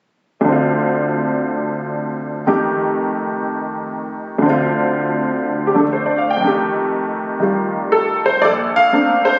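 A honky-tonk upright piano carries this short solo jazz passage on its own, sounding detuned, jangly and vintage, with a bright tone placed up front and present in the mix. It is a fragment cut from a longer piece, and the mood is sophisticated with a gentle warmth. The playing swings its eighth notes in 4/4 yet moves with a rubato freedom, spanning a range from Bb1 up to G5. The harmony alternates between Dm7 and F9 before settling on Bbmaj9 at 8.4 seconds, with the piano sounding from 0.4 to 9.4 seconds. A light reverb surrounds the instrument, and the room-captured sound has its top end sharply capped, lending a compressed, homespun character.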